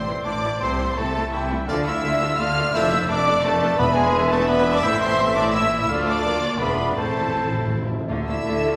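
In a restless triple metre with a rubato feel, this fast, dramatic romantic orchestral passage, cut from a longer piece, surges forward over a minor-key progression. A lush, vibrato-rich violin section carries the melody high above, while a darker, more distant second violin section, a shadowy cor anglais, a mellow, roomy clarinet and a pure, silvery flute weave second lines around it. Beneath them, the bowed cello and double bass sections anchor the bass with a rich tone, the cellos smooth and even, the basses adding expressive portamento, and an intense viola section fills in the accompaniment from the background. A close-miked French horn section holds mellow sustained chords from 0.6 seconds, and a tight trumpet section punctuates with clear stabs. Timpani struck with hard mallets on calf heads break in briefly and return for an articulate fill from 7.0 seconds, before a soft-edged bassoon slips in at 8.1 seconds. 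The whole ensemble rings in the generous reverb of a church or concert hall.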